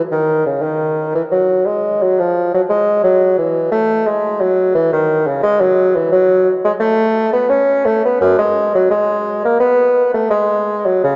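This classical, baroque-style fantasia for unaccompanied bassoon has a radiant, flowing mood, moving freely in rubato around 87 BPM in 4/4. The solo bassoon sounds dark and roomy, shaded with light vibrato, and roams from F#2 to C#4 for the full 11.2 seconds of this excerpt from a longer piece. It sits up front yet carries a distant quality, bathed in a lush church reverb that gives the production a mellow glow.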